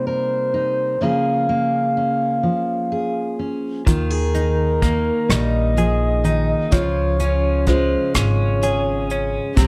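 An intimate, heartbroken acoustic folk-pop ballad excerpt in a slow 6/8 at 42 BPM, where a dark, breathy flugelhorn sings the melody with light vibrato over a full-bodied fingerpicked dreadnought guitar with audible finger squeak, joined at 3.9 seconds by a clean, compressed direct electric guitar playing arpeggios through harmonic tremolo, a woody, thumpy pizzicato upright bass and a soft brush kit with punchy kick, hi-hat and rim click, before a chamber string section enters in the background at 9.6 seconds with soft-attack sul tasto chords, all in light reverb.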